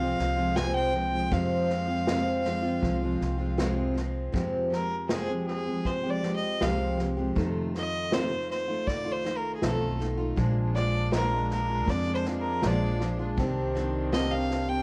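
Acoustic folk in a melancholic, reflective mood, this excerpt moves at a straight 80 BPM in 4/4 and sits in F dorian. A clear, bowed fiddle with light vibrato carries the melody up front, turning to a solo from 4.3 seconds that runs to the end. Beside it, a picked dreadnought steel-string guitar gives warm accompaniment, also up front, while a woody, dark pizzicato upright bass holds the low end. An unplugged drum kit sounds distant and roomy, with a tight kick and a medium-tuned snare played with bundle sticks. A rich chamber string section adds sustained, earthy chords in the background, dropping out between 4.3 and 10.4 seconds. The harmony travels from Fm through F7 and Bb7 to Cmadd9 under light reverb, and the whole mix carries the worn, warbling pitch drift of old cassette tape.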